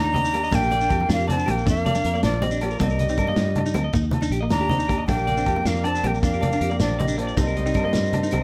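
Joyful and danceable, this excerpt of a highlife guitar band moves at 105 BPM in a straight 12/8 in Bb major, cycling through Ebmaj7, Bb6 and Cm7 under light reverb. An up-front, breathy concert flute carries the melody over a tenor saxophone second line sung with jazz vibrato, while a twangy clean electric guitar picks arpeggios through slapback echo and a hollow-body semi-hollow guitar adds lush, chorus-soaked accompaniment above a round, foam-muted fingered bass. A gritty, saturated breakbeat kit with a tight kick plays alongside ringing congas, a grainy, distant shekere and compressed agogo bells, and a reedy, overdriven combo organ slips in with sustained chords at 5.1 seconds.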